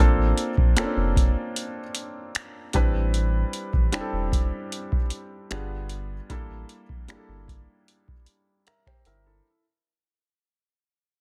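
A booming analog drum machine sits up front in this short contemporary R&B excerpt, its deep kick, metallic hi-hats and finger snaps carrying a soft-clipped edge on the snare at a moody, longing 76 BPM in straight 4/4. A round, sine-like sub bass holds sustained low notes beneath a felt-muted upright piano whose mellow, intimate chords, with audible action noise, move from Bbmaj9 through Am11 and G7b9 to Gm69. The dry, dense, heavily limited mix fades out across the whole passage, and a felt piano fill arrives at 8.3 seconds.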